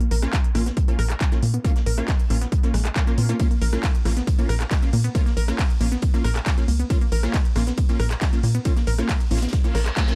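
Dark, dry production carries this hypnotic, driving peak-time techno excerpt in Bb phrygian at 137 BPM, where a heavy, overdriven electronic kick and a tight, punchy sawtooth sequencer bass sit up front over a Bbm chord, joined by an overdriven techno kit of smooth hats, handclaps, ride and rim clicks, a very quiet acoustic soul kit of hi-hat and snare with a rolled-off top, an aggressive, thick rave stab with chorus, 12-bit sampler grit and delay, and a warbling, lo-fi dusty pluck riff with chorus, tape character and digital delay, with the bass, stab, pluck and the techno kit's hats and cymbals pumping against the kick, until an electronic reverse cymbal rises in at 9.7 seconds.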